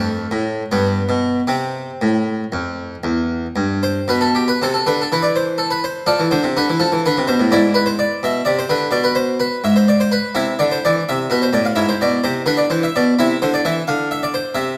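A solo harpsichord, plucked and full with an Italian-style voice and two sets of strings sounding up front, opens this serene, dance-like excerpt from a baroque-style suite movement in 12/8 at about 74-88 BPM with free rubato, moving from C major into A minor at 4.6 s as it ranges from E2 to F5 across its 14.8 s inside a wet recital-hall reverb.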